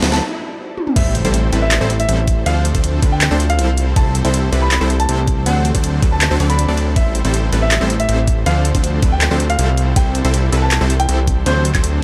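This short cut from a longer future bass track has a lush, lightly reverberant sound, with a tape-warm, knocking electronic kick and a fat, detuned sawtooth bass pressed up front, the bass pumping against the sidechain. It moves at 160 BPM in 4/4 with a half-time feel in A minor, and the mood is emotional. A drum fill and an electronic riser, the latter sitting in the background, open the clip, leading through a brief break into the drop at 1.0 seconds, where an impact lands and the kick enters. A bright, punchy supersaw stab plays a detuned unison riff with filter sweeps, while an evolving, thick bass holds the low end under chords that cycle through D7, Am7, Dm7 and Am7/C. A clear grand piano carries the melody high above with delay and the same pumping motion. Behind it all, a very quiet, ethereal pad sustains mellow, chorused chords, and a layered dubstep kit with a deep snare, handclaps, hi-hat, toms, woodblock and crash, re-recorded in a large room, fills out the rhythm.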